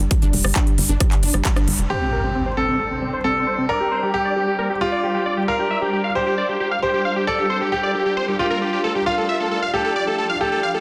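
This euphoric, bittersweet uplifting trance excerpt opens on detuned, wave-folded pluck arpeggios with dub echo, a dark, punchy sequencer bass pumping under the sidechain, a tape-warm dance kit with crisp hats, claps and low-pass-filtered cymbals, and an up-front electronic kick that stops at 1.5 seconds on a band accent, before a huge, airy supersaw lead under a filter sweep and a brilliant grand piano with audible action noise and tape echo arrive at 1.9 seconds, marked by an electronic impact, all in a dense, heavily limited master with light digital reverb.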